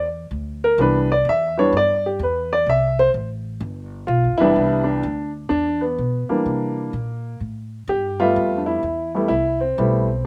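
Playful and sophisticated, this jazz piano trio cut swings along at 127 BPM in 4/4 with a lilting eighth-note feel in C major. A dark, mellow upright piano carries the melody up front, its vintage tone given a touch of slapback echo, and it takes a solo turn through the first 4.6 seconds. Beneath it, a pizzicato upright bass on gut strings supplies a thumpy, woody low end, sitting well behind the piano in the mix. The harmony opens unaccompanied by chords before settling on Cmaj9, moving to G7, then returning to Cmaj9 and sliding through C9 to a lush Fmaj9#11 near 8.4 seconds. Recorded outdoors with little reverb, the sound is dry, and the excerpt is a fragment of a longer piece.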